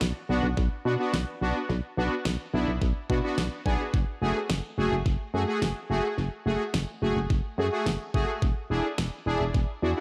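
Bold, detuned sawtooth synth brass with a filter sweep, chorus, vibrato and tape echo carries the accompaniment in this nostalgic, upbeat synth-pop excerpt at 107 BPM, entering at 0.3 s over a punchy, round FM bass and a layered electronic pop drum kit with a knocking kick, fat snare and tape echo, in an echo-heavy mix with moderate plate reverb as the chords move from Bm through F#madd9 to E7.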